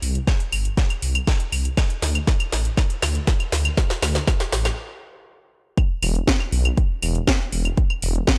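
A dark, detuned sawtooth bass rumbles deep and saturated under a house kit of claves, metallic hi-hats and a cracking snare, with a punchy electronic kick joining at 0.3 seconds in this hypnotic, driving melodic techno cut at 120 BPM in E minor. The bass carries tube saturation and sidechain pumping, while the tape-warm drums sit up front, re-recorded in a small room, with high-pass filters on the kit's hats, snare, percussion and room. A drum fill builds until a stop at 4.8 seconds, and the drop lands at 5.8 seconds, all captured in a dry, gritty hardware sound.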